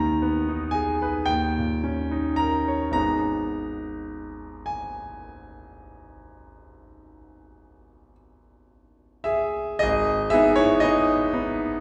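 Swaying in a slow 12/8 at about 34-40 BPM counted in dotted quarters, the rhythm moves with a flexible rubato that gives this short excerpt, cut from a longer romantic nocturne, its unhurried, breathing feel. A solo concert grand piano carries everything from 0.0 to 11.8 seconds, spanning G#1 to A#5 with a clear, smooth tone, a deep bass and a vintage character that sits up front. The harmony stays in G# minor, opening on G#m over D#, leaning into D#7 at 1.3 seconds and settling back onto G#m, which gives the mood a wistful, melancholic ache. The opening section gives way to a new passage at 9.8 seconds just before the fragment ends. A wet recital hall reverb surrounds the instrument, placing the listener further back in the room.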